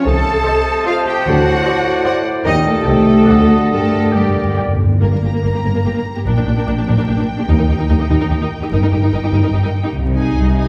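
A fast 3/4 pulse at 146 BPM, shaped with rubato, drives this dramatic, restless romantic passage in G minor, cut from a longer orchestral movement. A clear, intense violin section carries the melody from a distance over a second, smooth violin line, while an airy flute ensemble, clarinet, a vintage-toned oboe and a soft-attack bassoon fill out the opening before falling silent at 4.8 seconds. A rich, focused cello section anchors the low end with an even double bass section, lush bowed violas add accompaniment, and a dark, roomy French horn section holds sustained chords in the background. Round, soft-mallet timpani on calf heads sound close and dry, entering with a fill at 3.7 seconds as the harmony moves through Gm, Eb and Ab/C. A reverberant recital hall and vinyl crackle frame the sound.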